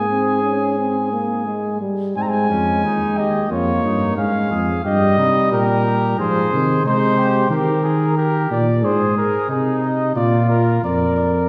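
Classical imitative canzona for brass ensemble in Ab major, moving at 90 BPM in a straight 4/4 with a contemplative, serious mood, cut from a longer piece. A close-miked, mellow cornet carries the melody up front while a warm flugelhorn with light vibrato sings a second line beneath it, and the tuba anchors the bass prominently. A trombone with vibrato and a smooth top supports the harmony until it drops out at 7.5 s, all set in the wet reverb of a scoring stage heard from further back in the room.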